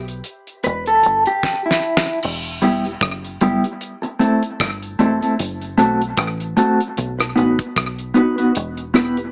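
A mellow, compressed electric guitar sits up front with tremolo and dub echo, entering during a clean guitar solo in the opening 2.2 seconds and a drum fill that lands on the change to the next section. This laid-back, meditative roots reggae excerpt moves at 76 BPM with a swung sixteenth feel in E harmonic minor, cycling through Em, Am, F#dim and B before returning to Em. A deep, round, foam-muted fingered bass holds the low end beneath a damped 70s drum kit with a fat snare, tight kick, dark cymbals and slapback echo, all set in a moderate club reverb with a small-speaker sound.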